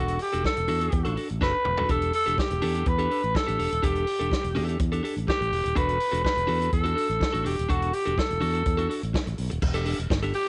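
A dry, close-sounding recording with a softened top end carries this glamorous, sultry disco excerpt in E minor at 124 BPM, where a raspy, growling alto saxophone leads up front with vibrato over a dark, compressed clean electric guitar, a warm fingered electric bass, and a punchy vintage drum kit with crash, hi-hat, toms, and a medium-tuned snare, the kit playing a fill at 1.4 seconds as the chords move between Bm7 and Em7.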